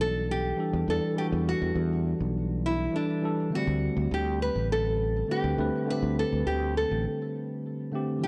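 Sunset chillout in a relaxed 4/4 at 102 BPM, this short excerpt drifts from Em9 to D7sus4 inside a lush hall reverb and a dark production. A small, boxy fingerpicked nylon-string guitar carries the melody up front, finger squeaks audible, with tape echo trailing it, while a clean tine electric piano played through a combo amp supplies accompaniment coloured by vintage 12-bit sampler grit and a low-pass filter. A growly, direct fretless electric bass sustains beneath them until it drops out at 7.1 seconds for a brief break.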